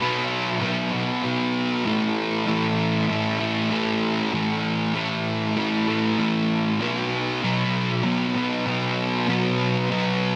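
A dark, double-tracked fuzz guitar sits up front from the start, picking between B5, A5 at 1.9 seconds and back to B5 at 6.8 seconds in the range from A2 to B3. Distortion, a subtle chorus and tape echo colour the guitar, while light reverb and a digital ambience surround it. This blissful yet wistful rock excerpt moves at a straight 97 BPM in 4/4, tuned to A4 = 441 Hz.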